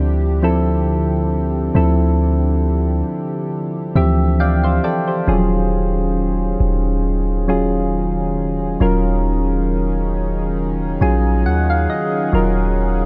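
Dark, lightly reverberant production frames this moody, longing contemporary R&B fragment at 68 BPM with a gentle sixteenth-note swing, where a deep, boomy 808-style bass sits up front beneath soft, round, chorused electric-piano-like synth keys that add brief fills at 3.5 and 10.6 seconds, while a shimmering, retro pulse-width pad holds slow-blooming, detuned chords as the harmony moves from Dm11 to Ebm11 at 5.3 seconds.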